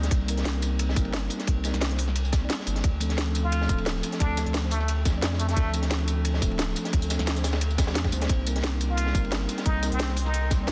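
Dense and heavily limited with light reverb, this lush, soulful liquid drum and bass excerpt runs at 176 BPM in C dorian with a slight swing, moving between Cm7 and Dm7. A round, up-front sine sub bass and a tight electronic kick anchor a layered drum bed: a garage kit with a cracking snare, crisp hats and tambourine, and a gritty, saturated breakbeat kit with dark ride and a high-tuned snare. Over a mellow tine electric piano soaked in dub echo, a vintage plunger-muted trumpet with wah-wah tone and scooped notes enters at 3.4 s, and an ethereal, very quiet detuned pad joins at 8.7 s.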